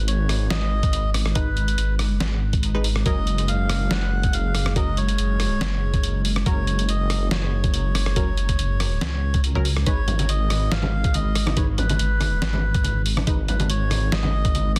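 A dense, heavily limited modern mix with a dry, close sound frames this brooding, meditative slice of deep dubstep, cut from a longer piece and moving with a half-time feel and lightly swung sixteenths. Up front sits a deep, rumbling detuned saw bass, saturated and beating, while a moody analog pad with chorus and phaser sustains dark chords in the background. A reedy, breathy melodica carries the melody through a dub echo, its nasal, vintage tone sounding band-limited, and a muted, mellow filtered chord stab with lush chorus and its own dub echo plucks short chords from 1.4 seconds. The gritty, pitched-down sampler-style drum kit brings hi-hat, rim click and a medium-tuned snare with a tape-warm, compressed grit, joined by a thumpy electronic kick of the same character. Bright, soft-handed acoustic congas enter at 10.1 seconds, just after the harmony settles onto G#m.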